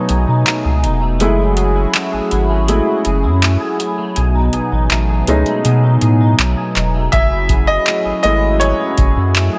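A clear baby grand piano plays a solo from the very start, its natural, short-sustained voicings sitting above a shimmering, retro pulse-width pad and a clean, picked electric guitar whose twangy, scooped arpeggios are coloured by analog chorus. This short fragment of contemporary R&B in a straight 4/4 has a longing, late-night mood. At 0.1 seconds a round, sine-like sub bass and a booming analog drum machine arrive. The bass is deep and up front, while the dry drums bring a deep kick, metallic hi-hats and handclaps. A break runs until 7.1 seconds as the piano solo continues over chords that move between B13 and F#m9, and light reverb gives the parts a little space.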